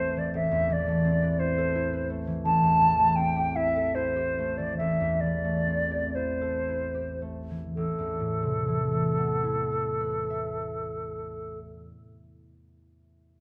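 Wistful and hazy, this excerpt from a longer impressionist classical duo in A minor moves in a rubato 3/4 at 52-88 BPM, easing and slowing from 1.4 to 7.8 seconds over Amadd9 and Am7 harmonies. The silver concert flute carries the melody with a pure, crisp-attacked tone and expressive vibrato, while the fingerpicked concert harp supplies warm, ringing accompaniment reaching down into its low register. Both sit up front in a wet recital hall reverb, and the harp rings on alone after the flute stops at 11.6 seconds.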